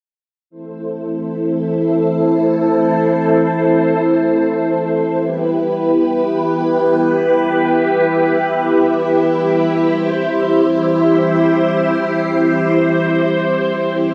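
Driving and moody, this synthwave excerpt in A minor drifts in free time as a lush, vintage string machine ensemble holds sustained sawtooth chords with a sub octave and slow attack, up front between E4 and C5, its ensemble chorus and a moving notch under a filter sweep from 0.5 to 14.1 seconds, moving from Am to Em at 5.2 seconds and C at 9.9 seconds, all bathed in a wet scoring-stage reverb.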